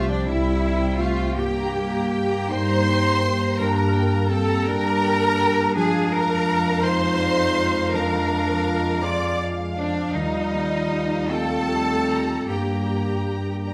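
Rich, up-front bowed cellos carry the bass of this longing, bittersweet cinematic orchestral passage in a rubato 6/8, joined by expressive double basses and dark, tight French horns holding sustained chords. Above them, one lush violin section sings a focused second line while a second violin section carries the smooth, vibrato-laden melody in the background. A distant, mellow solo clarinet, smooth, distant violas, and a ringing fingerpicked harp playing arpeggios fill out the texture, all set in a moderate concert hall reverb throughout this 13.7-second excerpt.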